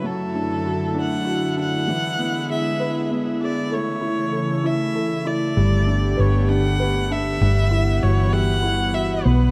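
A heartfelt, swaying pop excerpt in 6/8 at 65 BPM, opening with a rich, focused violin carrying the melody through a delay, over a soft felt-muted upright piano and an airy, breathy pad that holds sustained chords with chorus. At 5.6 seconds a round, punchy hollow-body electric bass enters up front, adding dark low weight beneath chords that move from Dadd9/F# through E7, A and Gadd9 to Emadd9/G. The sound is dry, with the rough feel of a home demo.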